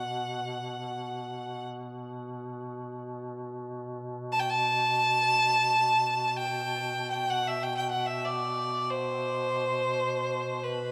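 Caucasian folk in the manner of a lament, this short fragment drifts in free time with a mournful, longing character. A single bowed fiddle carries the melody from the first moment to the last, bright and biting, with light vibrato and an intense edge, sitting up front yet heard from a distance. Beneath it a mellow duduk holds a low drone on B2 throughout, softer in level, with its own vibrato, scooped notes and a roomy, folk-style voice. The pace begins to slow from 3.3 seconds onward. Both instruments are bathed in a wet cathedral reverb with a long 6.3-second decay, giving the lament a vast, echoing space.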